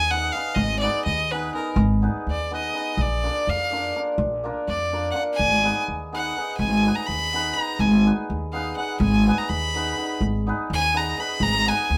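In a straight 5/8 at 250 BPM counted in eighths, this fiery, bittersweet Balkan wedding-band folk piece in Ab dorian sharp4 sets a nasal, intense bowed violin soloing up front with light vibrato over a woody, thumpy pizzicato upright bass and a shimmering hammered dulcimer, with the harmony moving from Abm to Bb at 3.0 seconds and back at 5.4 seconds in moderate studio reverb.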